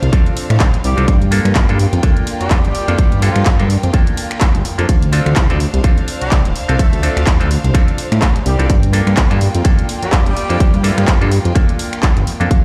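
A swung 4/4 groove drives this groovy, nostalgic stretch of filtered disco house, anchored by a punchy, overdriven electronic kick up front and an overdriven house kit of finger snaps, handclaps and pumping hi-hats, both re-recorded in a large room. A fat, detuned analog bass with ring modulation and a filter sweep pumps beneath a hollow, nasal clav colored by phaser and 12-bit sampler grit, while a lush bowed violin section, also gritty and pumping, holds sustained chords in the background. From 0.8 seconds a clear horn section doubled in octaves carries the melody through tape echo over Dm7 and Gm7 chords, and the whole piece sounds as if played through a big sound system in a bare room.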